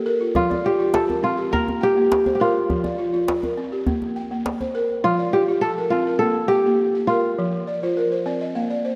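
A woody, buzzing balafon opens with a short fill, then settles into dark, smooth arpeggios played with soft rubber mallets, while a ringing, crisp kora melody, fingerpicked and mellow, joins up front at 0.4 seconds. A deep, close djembe played with soft hands supports this hypnotic, joyful West African piece at 102 BPM in F major until it drops out at 5.0 seconds, and the balafon closes with another fill from 7.7 seconds. The rough home demo mix sits in a lush hall reverb, and the recording is cut from a longer piece.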